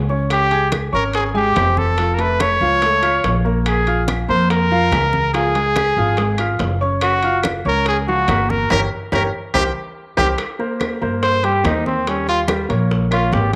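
A clear, punchy trumpet sits up front in this sultry, sophisticated slice of Afro-Cuban jazz at 143 BPM in straight 4/4, its forceful jazz-style lines carrying light vibrato, scooped notes and a slapback echo. Beneath it, a pizzicato upright bass with a woody, steel-string tone holds the low end close to the listener, while a baby grand piano with an open, long-sustaining sound fills in the accompaniment. Ringing congas played with hard hands, tight high-tuned bongos, metal-shell timbales and distant claves in a large room keep the percussion tucked into the background. The harmony drifts through lush chords such as Dbmaj7#11, Faug and Gbmaj7 before a band accent at 8.7 seconds and a drum fill lead into the next section. At 10.4 seconds the music settles into C minor over Cm7 and Eb7 as the trumpet takes a solo, all bathed in a moderate spring reverb, in a passage cut from a longer piece.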